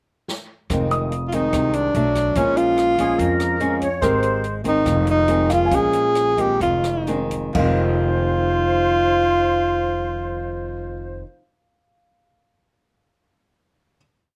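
Melancholic and intimate, this short bossa nova in F minor moves at 122-145 BPM, slows from 4.0 to 7.5 seconds, then settles on a final chord. A brief fill on a soft, natural drum kit with dark cymbals and a boomy kick opens the piece; fingerpicked nylon-string guitar and woody pizzicato upright bass set the groove as a breathy tenor saxophone carries the motif-based melody up front. Slapback echo colours the guitar, the saxophone and a small flute group whose pure phrases fill the melody's rests, while a very quiet baby grand piano adds scattered, mellow notes in a dry, close sound with little reverb.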